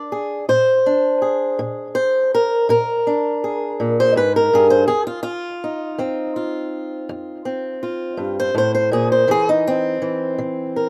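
Acoustic country blues with a swaggering, rollicking mood at 54 BPM in 12/8, carried by a solo fingerpicked swing-style acoustic guitar, boxy and up front, ranging from F2 to D5 over Bb7, F7 and C chords in a dry outdoor recording cut from a longer piece.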